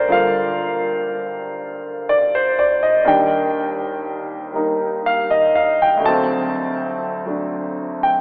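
Cool and moody, this short solo jazz excerpt cut from a longer piece sits at 81 BPM in 4/4 with a swung eighth-note feel in G minor. A lone concert grand piano carries everything from 0.0 to 8.2 seconds, ranging from D2 up to A5. Its tone is intimate and natural, with deep bass, audible action noise and an up-front presence. The harmony moves from Gm7 to Ebmaj7 at 3.0 seconds and then to D7 at 6.0 seconds. The playing is bathed in a long, wet cathedral reverb, yet the overall recording, made in a church or concert hall, has a telephone-like quality.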